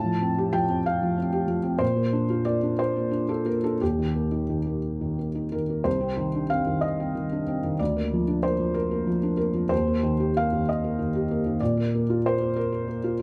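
The rhythm moves in 6/8 at about 62 BPM counted in dotted quarters, played with a free, rubato feel. This is a short excerpt of neoclassical minimalist piano in Bb major, tender and intimate in mood. A felt-muted upright piano plays alone throughout its 13.2 seconds, spanning C2 to A5, its tone soft and mellow with audible action noise that keeps it close and natural. The harmony opens on Fadd9/A and Bbadd9 before settling on Eb, then a second section from 5.9 seconds turns to Cmadd9, Bb/D and Eb before resting on Bb. Moderate studio reverb and a dark, warm production surround the up-front instrument.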